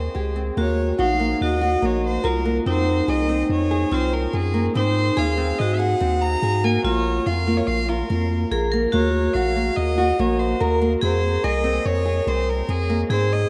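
Shimmering and restless, this contemporary chamber piece in an uneven 5/4 meter sets a clear, distant violin melody with light vibrato above bright, ringing vibraphone struck with hard mallets, boxy fingerpicked nylon-string guitar arpeggios with the odd finger squeak, and a deep, punchy sine sub bass up front, all washed in a vast cathedral reverb over chords moving from Abmaj7 through Ebm7, Fm7 and Bbm.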